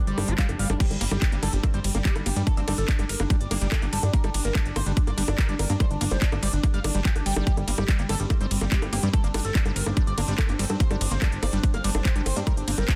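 Psychedelic trance in G minor at 144 BPM, this intense, alien excerpt is driven by a tight, up-front electronic kick from 0.4 s, a layered kit of crisp hats, bongos, handclaps, ride and crash, and a punchy, funky analog bass with a fast filter pluck. A gritty, guitar-like overdriven lead screams through distortion, chorus, phaser, vibrato and digital delay, while a squelchy, resonant acid line sits in the background with cassette tape colour and filter sweeps, both pumping with sidechain. Beneath them, a dark, morphing wavetable pad holds sustained chords, and a very quiet metallic FM wobble bass surfaces briefly at 1.6 s and again at 8.3 s, all within light reverb and a dense, heavily limited master.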